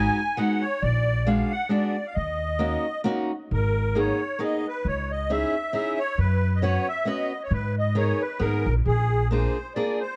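Musette waltz in 3/4 at 134 BPM with a swung lilt, whirling and bittersweet, opening in Eb minor and shifting to G# minor at 3.5 s. From the start, a reedy, shimmering musette accordion with tape echo carries the melody up front over picked steel-string acoustic guitar accompaniment with audible finger squeak and a woody, thumpy pizzicato upright bass on gut strings, all in a dry, close small-room sound with a 1970s studio character, in a short section cut from a longer piece.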